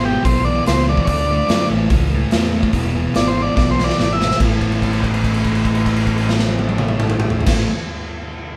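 A raw, swaggering live-room sound opens this garage rock clip, with the band captured together under moderate studio reverb. At 144 BPM in a straight 4/4, a buzzy, overdriven transistor combo organ takes the lead up front with a light vibrato, soloing through the first section over chords moving from E to D to A and back to E. Beneath it, a double-tracked fuzz guitar grinds out a picked riff, while a fingered electric bass with overdrive sits round and amped in the low end. The raw drum kit, punchy in the kick and gritty in its saturation, fills a bright stone room that pumps around the crash, hi-hat, snare and toms, its top rolled off. A drum fill from 3.6 to 4.4 seconds launches the second section, where the organ drops away and the band settles on an A5 chord under a held note that rings until 7.5 seconds, cut from a longer piece.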